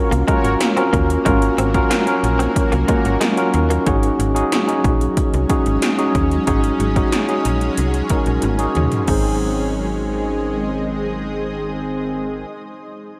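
A bright tine electric piano sits up front in this romantic, uplifting slice of 1980s-style pop, carrying the accompaniment at 92 BPM in a straight 4/4 in Ab mixolydian. Beneath it, a slap-like FM bass with a snappy, metallic attack and decaying notes anchors the low end. Punchy electronic pad drums bring a gated snare and toms, metallic hats and an overdriven edge, sounding as though re-recorded in a small room. A shimmering, ethereal pad holds sustained chords with an octave-up sheen, slow attack and long release, coloured by chorus, phaser and its own reverb. Mellow synth brass adds round, dark stabs with a filter sweep, while a compressed, direct-recorded clean guitar plays a picked riff in the background early on, treated with ensemble chorus and analog delay. The harmony moves from Gbmaj7/Ab to Ab7sus4 and settles on Ab, and after a drum fill at 8.4 seconds the drums stop at 9.2 seconds as the brass returns, the whole mix sitting in light reverb.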